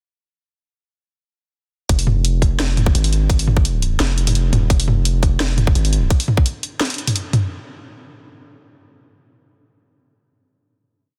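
At 1.9 seconds this tense and dark half-time drum and bass piece in F minor at 171 BPM drops straight in with a tight, up-front electronic kick and a sparse half-time kit of hi-hats, low toms and a cracking snare, both set in a small room reverb, while a deep, sine-toned 808-style bass with a fast attack plays long, decaying chopped phrases, all sealed in a dense, heavily limited modern master.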